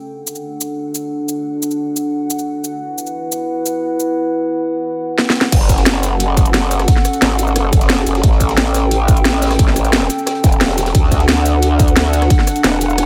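A detuned, moody analog pad opens this aggressive, dark technical drum and bass excerpt with sustained chords that pump under a chorus sheen, joined almost at once by an overdriven electronic kit of cracking snare, bright hats, cabasa, rim clicks and crash. After a drum fill, the drop lands at 5.5 seconds with a growling, wobbling bass run through tube saturation, a punchy up-front electronic kick, and a very quiet, gritty breakbeat kit with a high-tuned snare. Light digital reverb gives the mix a small sense of space as the chords move from F#m through A7 back to D.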